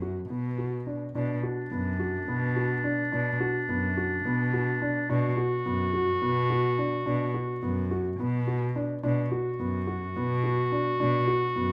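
Contemporary instrumental chamber music in an uneven 7/8 meter, this cut from a longer piece moves at 213 BPM counted in eighths with a straight feel, and its mood is urgent yet pensive, centered on B minor and tuned to A4 = 438 Hz. A concert grand piano plays arpeggios in a mellow, intimate register, its vintage tone carrying deep bass and audible action noise. Beneath it, a single bowed cello sits up front as the bass line, sounding nasal and boxy, with expressive vibrato and portamento. At 1.2 s a clarinet enters with a second line, up front with a clear, soft-attacked classical tone that continues to the end at 11.7 s. Close, detailed microphones and light reverb give the ensemble a near, focused sound.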